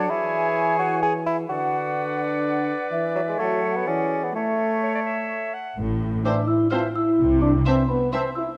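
Playful and quirky, this cinematic excerpt in A major moves at 127 BPM in 3/4 as clear clarinet, an airy flute section, oboe, an up-front bassoon and a dark French horn section playing sustained chords weave together from the start, until at 5.8 s the harmony turns to A minor with a rich double bass section and cello section playing portamento entering below, followed at 6.3 s by a bell-like celesta melody over background violins and a lush viola section, all set in a moderate scoring-stage reverb.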